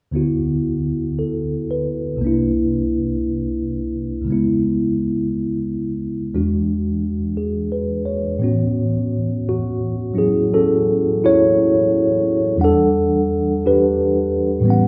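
A large studio's wet reverb, with a 0.9 second decay, places the listener further back in the room, giving this short jazz passage an intimate, romantic glow. A tine electric piano is the only voice. Its tone is warm and clean, played through its built-in speakers, and it moves between a low C2 and F#5 as accompaniment. The tempo is a slow 58 BPM in 4/4, with a swing feel on the eighth notes, in A major. The first half drifts through D6, C7, C#m7 and E7, and at 8.4 seconds a second section settles onto A6 before turning to Em7 at 12.6 seconds, where this fragment of a longer piece breaks off.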